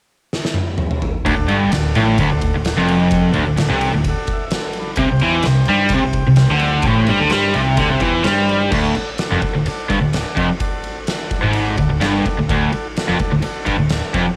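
Cut from a longer piece, this raw, swaggering garage rock home recording on cassette has light reverb and a small room ambience, opening at 0.3 seconds with a drum fill on an oversized, low-tuned acoustic kit whose fat snare, punchy kick, dark cymbals and gritty, pumping stone-room sound carry the straight 128 BPM beat in 4/4. At 1.3 seconds a cranked, double-tracked stack guitar charges in up front with a bright, overdriven picked riff in D mixolydian, joined by a growling, fingered electric bass that is also overdriven. Sitting in the background, a vintage combo organ holds buzzy, clean sustained chords and adds a short fill at 4.0 seconds as the harmony moves between D and C5.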